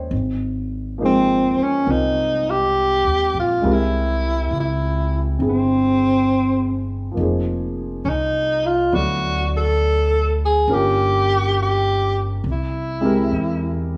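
A warm baby grand piano and a woody, thumpy pizzicato upright bass on gut strings open this wistful, intimate jazz ballad at a slow 68 BPM in 4/4 with a gentle swing, the bass sitting up front. At 1.1 seconds a breathy, mellow tenor saxophone takes the solo melody with jazz-style vibrato, moving through harmonies from Ab69 and C7b13 to Fm7 and Gm7b5. A moderate echo chamber reverb and small room ambience give the sound an intimate atmosphere in this passage cut from a longer piece.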